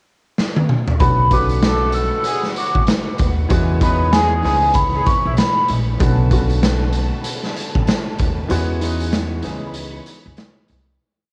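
Boom-bap hip-hop at 96 BPM with a swung, confident and soulful feel, opening on a drum fill at 0.4 seconds before a gritty, saturated kit drives a hard kick and backbeat snare under a woody pizzicato upright bass line with chromatic approach notes, smooth rootless grand piano chords with grace notes, a ringing vibraphone loop that plays until 5.7 seconds, short jazz riffs from a clear trumpet section with analog delay, and lush bowed strings sustaining in the background, heard on a home cassette recording that fades out from 8.5 seconds.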